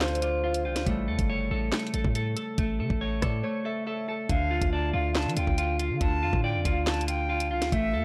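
A dry, gritty recording in digital ambience carries this dark, menacing half-time drill piece at 140 BPM in D minor, where a knocking kick, sharp snare, tape-toned hi-hats, rim clicks and handclaps sit up front beside a punchy, heavy 808 bass with a noise layer, a clean picked electric guitar plays filtered arpeggios through analog delay, a bright fingerpicked Celtic harp rings under a low-pass filter until 5.6 s, and after a break from 3.4 s an airy silver concert flute with vibrato and delay enters at 4.3 s as a second line over the move from Dm7 and A7 to Dm.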